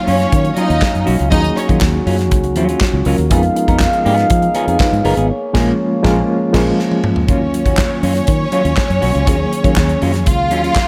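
Disco with a sultry, glamorous air, cut from a longer piece, where a tight-kicked, bright-cymbaled drum kit with handclaps and a round, foam-muted fingered bass drive a reedy, lightly overdriven electric piano with tremolo and a dark, clean semi-hollow guitar, while a smooth-topped French horn section holds sustained chords until 7.3 seconds, lush bowed strings, heard briefly at the opening, return up front from that point, and a band accent with a drum fill leads into the change, all in a small room with light reverb.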